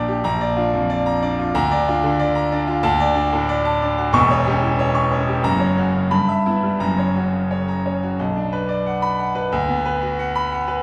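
In a rubato 2/4 at 92 BPM, this stormy, agitated passage from a classical virtuoso piano study in B minor is carried by a solo concert grand that sounds bright, brilliant, open and up front, with deep bass and long sustain across a range from E1 to C#6. Its harmony moves restlessly through B-flat, D and F-sharp colours before settling onto B minor at 8.2 s for the closing stretch. A wet recital hall reverb, heard from further back in the room, surrounds the passage.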